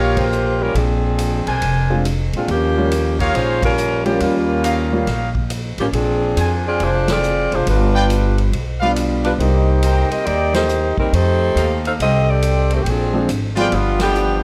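An up-front, close-miked saxophone section carries the melody with light vibrato in this swinging, energetic big band passage at 139 BPM in Bb mixolydian, with a brilliant trumpet section punching in stabs and the whole band hitting accents together. A woody pizzicato upright bass sits up front alongside the reeds, while an acoustic drum kit swings in a big, natural room with a punchy kick and medium-tuned snare. A clear, intimate baby grand piano with audible action noise comps from 1.9 to 5.1 seconds and again from 8.8 seconds, all under light reverb in this short cut from a longer piece.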